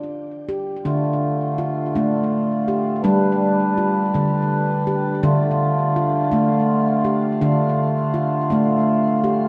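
A wet echo-chamber reverb surrounds this gentle, meditative world piece for tuned percussion, cut from a longer work and moving slowly at 55 BPM in 6/8 in D dorian. An up-front handpan opens at 0.0 seconds with ringing, stainless-steel arpeggios played with the fingertips and trailed by delay. From 0.8 seconds a mellow, reedy accordion joins with airy sustained chords shimmering in reverb, its slow beating tone settling the Dm and G harmony.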